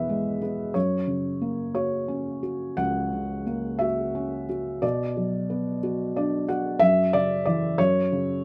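Warm and peaceful, this brief excerpt cut from a longer classical piece features a lone felt-muted upright piano in a lyrical, rubato 6/8 at 60 BPM, its soft, dark, thick-felt tone sitting up front with audible action noise under close, detailed microphones and light reverb, moving from E through F# to Bm before a short fill at 5.8 seconds settles on F#5.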